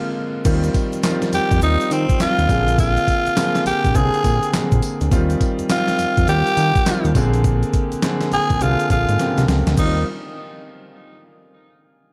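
Swung sixteenths at 103 BPM in 4/4 drive this bouncy, upbeat new jack swing excerpt in Eb major, where a band accent opens the cut as a breathy, raspy tenor saxophone sings the lead up front over a clear concert grand piano with audible action noise, a fat, saturated analog bass with a filter sweep, a thumpy 12-bit drum machine of kick, snare, hi-hat, handclaps, tambourine and crash re-recorded in a large room, and a grainy egg shaker in the background, all circling Eb69 and Bb9 in a dark, lightly reverberant mix until a drum fill at 9.2 seconds.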